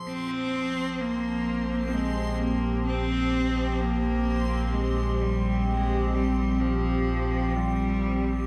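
A clear, focused bowed cello with vibrato carries the melody from 0.1 s, its line trailing shimmer reverb and dub echo over a held Fsus2/Bb chord in a serene, reflective ambient piece at 64 BPM in 3/4. Alongside it sit a warbly, nostalgic tape-like pad with chorus and shimmer and a deep, round analog bass, while a very quiet felt-muted upright piano plays soft arpeggios with audible action noise. A reversed, granular swelling texture fades out in the background, and the whole echo-heavy mix is bathed in a wet chamber reverb.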